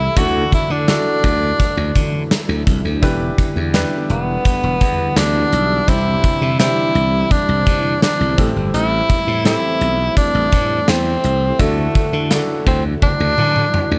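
A straight 4/4 groove at 84 BPM comes from a gated 80s drum kit, with a tight kick, medium-tuned snare, hi-hat and toms sitting up front in an airy stone room, and a drum fill closing out the last second from 13.0 s. A growly, punchy slap bass and a clear baby grand piano carry the moody, dramatic 1980s-style pop progression through Dadd9, Em7, Cadd9 and Am7. A silky string machine with ensemble chorus sustains chords in the background while a bright tenor saxophone with vibrato and tape echo leads the melody, all under light reverb in this passage cut from a longer piece.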